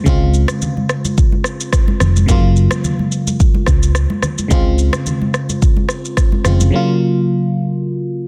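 Joyful and breezy, this short afrobeats excerpt sets a glassy, bell-like FM electric piano with chorus up front over Dbmaj7 and Gbmaj7 chords, joined almost at once by a round, punchy hollow-body bass, an electronic afro-pop kit with a deep kick, rim click, shaker and a softly clipped snare, and bright, close congas, all of which stop at 6.7 seconds to leave the piano alone until 8.3 seconds in a dry, dense, heavily limited mix.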